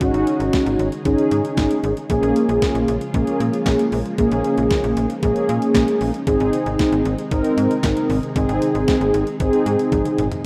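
Upbeat yet wistful, this short synth-pop clip moves in a straight four over an Absus4, Bbm7 and Ab progression, with a round, dark, up-front mellow synth brass accompaniment carrying chorus and vibrato, while a vintage string machine playing violas sits in the background with soft-attack sustained chords, phaser and ensemble chorus. Underneath, a snappy slap-like FM bass with a metallic attack sounds alongside a clean 12-bit digital drum machine whose thumpy kick, medium-tuned snare, toms, hi-hat and handclaps carry a tape-warm, sampler-style character. Moderate plate reverb colours the rough home demo mix, and a drum fill at 9.9 s closes the excerpt.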